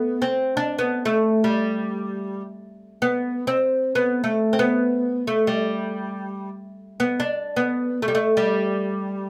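Festive and passionate, this short excerpt from a longer piece comes from an Arabic maqam ensemble setting, played in free time in maqam ajam on G with a tuning reference of A4 = 441 Hz. A solo oud carries the whole 9.3 seconds, moving within a compact span from G3 to D4. Its fretless, plectrum-plucked double strings sound bright and woody, and the instrument sits up front in the mix. Close, detailed microphones capture the acoustic character of the oud, while a light reverb adds a touch of space around it.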